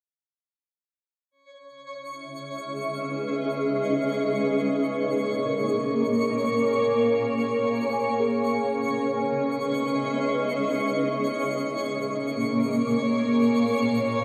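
Ambient music in free time and C# dorian, spacious and serene, drifting through a slow alternation of C#m7 and A#m7 chords in this passage cut from a longer piece. A twinkling granular texture appears first at 1.7 s, a sparkling FM layer with an octave-up shimmer sitting high in the register. At 2.3 s the granular cloud pad arrives up front with sustained chords, its detuned unison tone cloudy, blurred and full-bodied, fading in slowly and evolving as it rings out under ensemble chorus and shimmer reverb. A large celesta joins at 4.6 s with delicate arpeggios, its soft felt hammers giving a sweet, bell-like ring that stays mellow in the background, carried by tape echo and shimmer reverb. The whole mix is soaked in a lush hall reverb with a 2.8 s decay, giving the recording a dreamy, floating sense of space.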